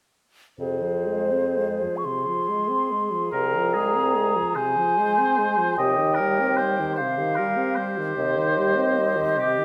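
In a rubato 12/8 pulse, this solemn, elegiac excerpt from a slow romantic classical movement for wind quintet opens with a hollow, silvery flute singing the melody with vibrato up front. Beneath it, a clear clarinet and a distant, roomy French horn play the accompaniment while a soft-attacked, vintage-toned bassoon carries the bass until 9.2 s. A vibrato-tinged oboe joins with a second line at 3.3 s, all set in a moderate concert hall reverb over F minor harmony that moves to C minor.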